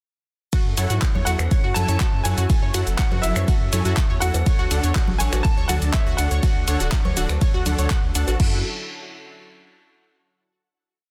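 A short progressive house piece in F# minor at 122 BPM, emotional and dreamy, opens at 0.5 s straight into the drop, with an up-front, deep, tape-warm electronic kick pounding four-on-the-floor beneath programmed closed and half-open hats, ride, cabasa, snaps, claps and crash from a deep house kit whose snare carries soft clipping. A round, dark analog bass of sine and triangle tones rolls in sixteenth notes from 0.7 s, while a detuned sawtooth pluck with a noise layer and filter sweep runs a three-step loop that drifts against the bar, washed in chorus and delay. Behind them, a thick, warbling vintage pad holds slow-attack chords, and a punchy supersaw stab, tape-coloured and delayed, hits off-beat chords in the background, all of these parts breathing with sidechain pumping. Hard-hand congas and cowbell add a tribal loop from 1.2 s, and a brilliant, worn baby grand piano with audible action noise sings short motif phrases through a digital delay. 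The harmony moves from F#m7 to D and back to a final F#m7 chord that rings from 8.4 s, all in a dry, dense, heavily limited modern master.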